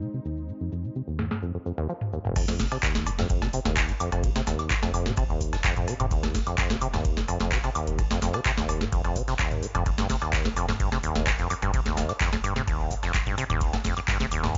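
A raw, playful acid house cut at 128 BPM opens on an F minor chord from a smooth, detuned sawtooth pad with chorus and a pumping sidechain, sounding alongside a rubbery, resonant acid bass riff with a plucky filter and dub echo and a booming analog drum machine placed up front. That drum machine runs the full length, overdriven and filtered, with a crisp snare, metallic hats, handclaps, cowbell, woodblock, shaker, toms, ride and crash, all re-recorded in a small room. The pad stops at 2.3 seconds, and at 2.4 seconds the drop arrives as the harmony moves to F5 and an overdriven, deep analog kick drum enters. A very quiet acoustic kit in a big room adds hi-hat, shaker and a medium-tuned snare, while a round sine sub bass holding F1 comes in at 2.6 seconds in the background, pumping with the sidechain. The mix carries light reverb and a dark top end, with the acid bass and drum machine driving the piece.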